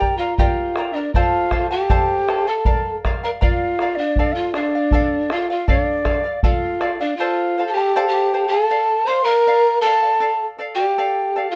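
A straight two-beat pulse from the deep, dark bombo carries this earthy, melancholic Andean folk excerpt until 7.0 s, beneath an airy cane quena melody with vibrato and crisp chiff, a breathy, hollow bamboo pan flute holding a lower second line up front, and a bright fingerpicked charango whose doubled strings shimmer, all captured with close, detailed microphones in a moderate studio reverb.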